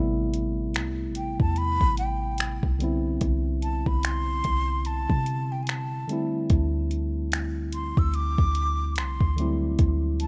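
A slow 73 BPM groove with a swung sixteenth-note feel drives this moody, sensual contemporary R&B excerpt: soft electronic drums of finger snaps, hi-hat and a gentle kick arrive at 0.3 seconds over a deep, boomy 808-style sine bass and a worn, slightly out-of-tune tine electric piano heard through its built-in speakers. At 1.2 seconds an expressive, breathy jazz flute takes the melody in a high register, its vibrato and lifted highs carried on tape echo, while the chords move from Am9 to Cmaj9 to D9sus4. The sound is dry and close, with the drums re-recorded in a small room and the whole mix having the rough feel of a home demo.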